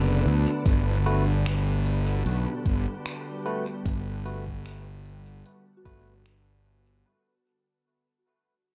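Meditative and spacious, this short ambient dub fragment moves at 75 BPM in 4/4 with a light swing on the sixteenths, fading out across its full 7.1 seconds. A soft, organ-like pad sustains Bm7 and then Gmaj9 in the background, its pure, full-bodied tone thickened by ensemble chorus, while a breathy, wind-like noise texture hovers darkly on a single high pitch above it. A fuzz-laden fingered electric bass sits up front, round and punchy with overdrive, anchoring the low end until about 7.0 seconds. From 0.7 seconds a deep electronic kick enters alongside an electronic kit of finger snaps and crisp hi-hats, both re-recorded in a large room, with the kit trailing dub echo. A barky tine electric piano adds clean stabs through a combo amp with its own dub echo, and a very quiet, mellow FM bell arpeggiates on F#4 at the start and again from 5.8 seconds, all within a dark production with light reverb.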